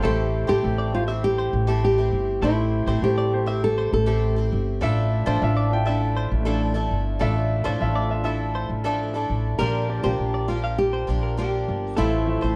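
A straight 4/4 pulse at 101 BPM carries this sunny, easy-going acoustic pop excerpt: a fingerpicked nylon-string guitar with fresh strings and audible finger squeak sings the melody until 4.5 seconds and returns at 9.6 seconds, over a clear, present grand piano, a boxy, shimmering, octave-doubled picked twelve-string acoustic guitar, compressed arpeggios from a clean direct-recorded electric guitar with subtle chorus, and a woody, growly pizzicato upright bass sitting up front, set in a dark production with light reverb as the chords move from Am7 and Dmadd9 to Bb6 and Fmaj7/A.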